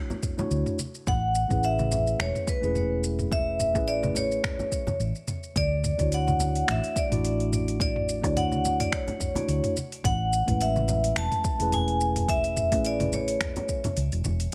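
Sunny and blissful, this sunset chillout fragment from a longer piece rides a lightly swung 4/4 groove, with a ringing, up-front vibraphone struck with hard mallets carrying the melody over a mellow tine electric piano softened by a low-pass filter and tape echo, a round, dark hollow-body electric bass, a deep electronic kick, a deep house kit of finger snaps, metallic hi-hats, shaker and toms, and soft-handed congas, all drifting between Dmaj7 and Amaj9 in a light digital reverb.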